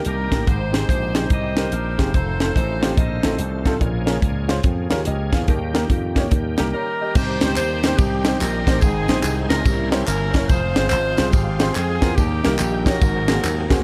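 Uptempo gospel with a soulful, hopeful swing, driven up front by a tight funk drum kit with a high-tuned snare and a growly, punchy slap bass through an envelope filter, while a woody upright piano comps and a bright tonewheel organ holds lightly overdriven chords through a slow rotary speaker in the background. An edgy, close-miked saxophone section carries the melody with vibrato, drops out at 3.8 seconds, and returns at 6.6 seconds just before a short break. After that break, tambourine and group handclaps join at 7.2 seconds, lifting the second section in a small room.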